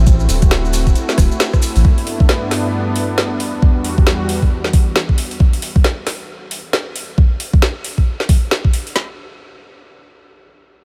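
An overdriven electronic garage kit sits up front, its knocking kick and woody snare carrying the swung two-step groove at 135 BPM in 4/4 through this soulful, sunny UK garage excerpt. A quieter layer of the kit adds metallic hi-hats, rim clicks and more snare, with both drum layers sharing a small room ambience. A deep, round, soft sub bass joins the opening alongside grainy, mellow maracas, and both drop out at 1.8 seconds. A vintage analog pad of detuned sawtooth tones, warbling with chorus and pumping from sidechain compression, sustains slow-attack chords moving from D9 to G69 to Em9. The pad ends at 5.4 seconds, leaving the drums alone until about 9.1 seconds under a light reverb.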